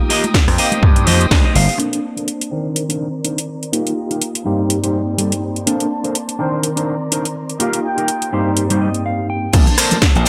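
Filtered disco house at 124 BPM in Bb major, sunny and joyful, with a swung sixteenth-note feel and lush jazz-tinged chords such as Bbmaj9, Cm9 and F9sus4. A worn, slightly out-of-tune tine electric piano with light overdrive and phaser carries the accompaniment alongside a clean, picked electric guitar riff, while a smooth, bowed violin section holds sustained chords in the background with a touch of vintage sampler grit. The house drum kit is up front with a cracking snare, metallic hats, rim click, cabasa and crash. A punchy, tape-warmed electronic kick, a bright, overdriven slap bass and the soft-handed tambourine and congas drive the opening before dropping out, then all return at 9.5 seconds. The piece opens with a filter sweep and a band accent, the guitar adds fills, and a clear trumpet section enters at 6.4 seconds with a lightly vibrato, jazz-style melody. Most parts pump against the sidechain under a low-pass filter, set in light digital ambience, and this cut from a longer piece breaks briefly just before its close.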